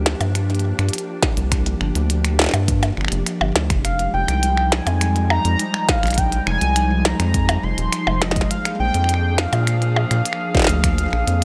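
A rubbery square bass sits up front, hollow and bouncy with a resonant filter pluck, carrying a dark low line from Eb1 to Bb2 through this melancholic, glitchy IDM cut from a longer piece. It moves at 103 BPM in a straight 4/4 in F dorian, over a glassy FM pad whose ethereal sustained chords bloom slowly under ensemble chorus and their own reverb. A glitchy drum kit clicks along from the start with finger snaps, a tiny snare, hi-hats and percussion blips, and a deep electronic kick joins at 1.2 seconds. At 3.8 seconds a velvety synth lead enters in a high register, mellow and smooth with vibrato, chorus and digital delay. The harmony moves from Gm7 to Fm9 and then Bb7, all wrapped in a light digital ambience.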